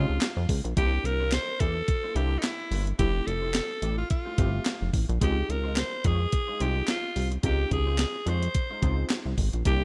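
A dry, rough home-demo mix carries this smooth, danceable early-eighties boogie funk excerpt at 108 BPM with a light sixteenth-note swing, where a raspy, forceful alto saxophone takes the up-front melody over a glossy chorused synth bass, a thumpy, tape-tinged 12-bit drum machine with handclaps that enters at 0.2 seconds, a punchy detuned polysynth comp sitting in the background, and a very quiet, twangy guitar riff at the edge of break-up, all moving through Dbmaj9, C9 and Fmaj9 chords.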